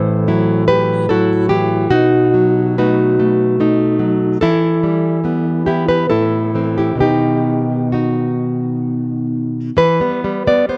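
A fingerpicked nylon-string guitar, up front with fresh strings and a warm tone, plays a passionate, wistful romantic classical solo in a rubato 3/4, moving from F#m7b5/A through B7, Em, Am and B before arriving on Em at 9.8 seconds, all heard in moderate studio reverb through worn, warbling old cassette tape with drifting pitch, in a brief fragment cut from a longer piece.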